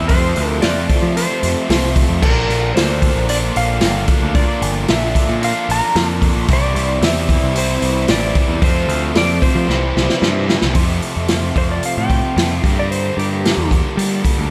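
A small room's light reverb frames this driving, swaggering classic rock excerpt, cut from a longer piece, moving at 112 BPM in a straight 4/4 and tuned slightly flat with A4 at 437 Hz. Up front, a vintage acoustic drum kit with a punchy kick, a medium-tuned snare, hi-hat, crash cymbal and a rolled-off top sits alongside a growling picked electric bass, heard direct and amped with overdrive. Behind them, two bright picked electric guitars, a cranked stack and a raw garage tone, both overdriven and touched with slapback echo, play riffs, while a very quiet string machine adds shimmering, sawtooth violin chords with a soft attack and ensemble chorus. The melody comes from a dark, clean, compressed lap steel played with slide and volume swells, carrying slapback echo and analog delay. The chords move through Fadd9, Bb and Cadd9, and after a drum fill from 9.7 seconds, an electric slide guitar solo begins at 10.8 seconds over F and Gmadd9, with the lap steel stopping at 13.7 seconds.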